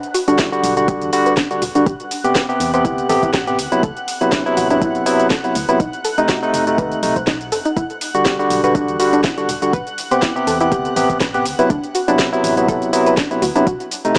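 A swung 4/4 deep house groove rides on a punchy, layered electronic kick and a house kit of cracking snare, metallic hi-hats and shaker, with the kick arriving at 0.4 seconds. Up front, a bright, barky tine electric piano plays clean stabs through digital delay over a smooth, deep progression of Em9, Am9, D13 and B7b9. Behind it sit soft, round pluck arpeggios with chorus and dub echo, a silky, detuned string pad with ensemble chorus, and a dark, hollow organ-like FM bass, all pumping against the kick, in a short cut with light reverb and a small-speaker sound.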